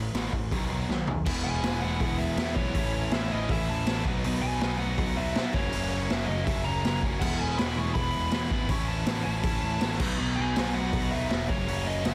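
A sludgy overdriven guitar, a tight, bright distorted guitar and a growling overdriven bass open this rebellious, upbeat punk rock excerpt at 161 BPM in E major, with a raw, gritty small-room drum kit up front driving the straight 4/4 and snapping into a fill at 0.9 seconds. A very quiet double-tracked distorted guitar joins at 1.2 seconds, and from 1.3 seconds the progression moves through E, A, B and F#, as a dark, smooth lead guitar enters at 1.4 seconds, carrying the melody high above with overdrive and tape echo. The sound is dry, dense and heavily limited, with the punchy kick and saturated, rolled-off drums pressing ahead of the background guitars.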